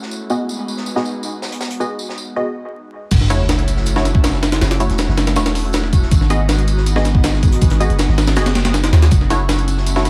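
An airy, breathy pad with chorus and phaser opens over a crunchy, dark breakbeat kit in the background, with muted, phased dub chord stabs echoing from 0.3 seconds, until at 3.1 seconds a gritty, pitched-up sampler-style break with a thumpy kick and a deep, decaying 808-style bass drop in up front alongside a background sub drop, driving this atmospheric, frenetic 160 BPM drum and bass and jungle excerpt in F# dorian through G#m7 and F#m7 chords under vinyl crackle and studio reverb.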